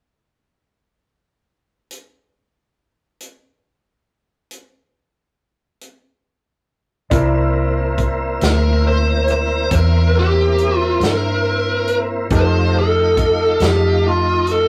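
A smooth, overdriven lead guitar sits up front and carries the melody from 8.4 s in this laid-back, gritty slow blues fragment in 12/8 at 46 BPM, centered on C mixolydian. The natural country drum kit opens alone at 1.9 s with hi-hat, punchy kick and medium-tuned snare. At 7.1 s the band joins over C7 then F7: a dark, round, foam-muted fingered bass up front, a clean tonewheel organ holding sustained chords with key click, chorus vibrato and slow rotary speaker, and a bright, woody upright piano in the background, all in a rough rehearsal-room sound with moderate studio reverb.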